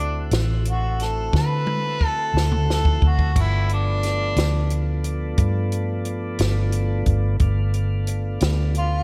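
Lightly reverberant studio sound frames this rollicking, swaggering slow blues in 12/8, cut from a longer piece, where a mellow, overdriven harmonica with scooped notes carries the jazz-style solo from a distant, roomy spot over smooth tonewheel organ chords turning through a slow rotary speaker, while a round, foam-muted fingered electric bass with a dark, amped tone and a dry, up-front cocktail drum kit with punchy kick, high-tuned snare and shadowy cymbals drive the groove, the drums playing a fill from 1.3 to 3.4 seconds that leads into the harmony's move from D7 to G7.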